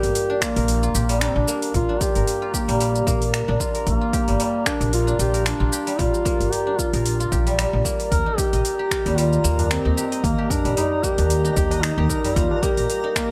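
A small room with light reverb frames this earthy organic downtempo groove at 113 BPM in Bb major, where a smooth, folk-style mellow duduk melody with delay floats over silvery, fingerpicked guzheng arpeggios also touched by delay, a woody, up-front pizzicato upright bass with sidechain pumping, a cloudy, blurred granular pad with reverb and sidechain pumping in the background, and overdriven deep house drums (a punchy electronic kick plus cabasa, finger snaps and metallic hi-hat), while a distant, high-tuned tabla enters at 8.3 seconds and a sparkling, twinkling granular texture joins at 9.3 seconds.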